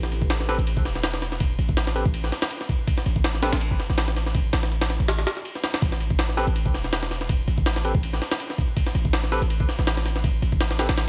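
A digital ambience surrounds this atmospheric, raw drum and bass cut, a jungle excerpt at 163 BPM in A minor with a 16th-note swing. Up front sits a gritty, pitched-up sampler-style kit of thumpy kick, medium-tuned snare, hi-hat and ride sounds, compressed and re-recorded in a large room, while a deep, boomy 808-style sine bass with a noise layer, a fast attack and a decaying tone holds the low end. Bright, barky tine electric piano stabs with dub echo appear at 0.5 seconds and return at 6.4 seconds over an A5 chord.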